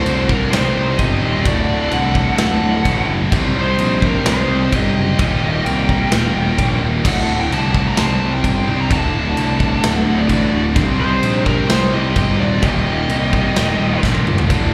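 A growly, fuzz-drenched electric bass sits up front in this heavy, aggressive metal excerpt, driving a half-time feel at 129 BPM alongside a big, punchy acoustic drum kit with bright cymbals, a medium-tuned snare, china and crash cymbals, and toms, with a drum fill closing the passage at 14.0 seconds. Over the top, a dark high-gain lead guitar carries the melody, its distorted tone thickened by slapback and tape echo, while a second high-gain lead in the background traces a lower line beneath it. Three rhythm guitars pile up the riff: a scooped high-gain guitar in the background, plus a very quiet tight distorted guitar and a very quiet double-tracked crunchy overdriven guitar. The harmony moves between D, C minor and E flat, giving the riffing a brooding, menacing pull. The recording has the feel of a live gig heard through a club PA, with a touch of room reverb but otherwise a fairly dry, in-your-face sound, and it is cut from a longer piece.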